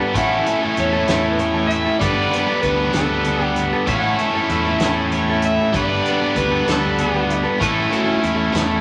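Folk rock with a heartland rock lilt, this jangly, warm excerpt rolls along at 64 BPM in a straight 6/8 in A mixolydian, swaying between A and Gadd9 as a biting, double-tracked overdriven electric guitar riff sits up front over a woody, boxy acoustic archtop picked with old strings, a dark, round fingered bass and a natural country drum kit with a fat snare and punchy kick. Twangy pedal steel played with fingerpicks and a slide drifts in the background with volume swells as a second line, while a gritty, amplified harmonica carries the melody from 1.3 to 7.3 seconds with vibrato, tongue slaps and scooped notes. A moderate large studio reverb surrounds the band.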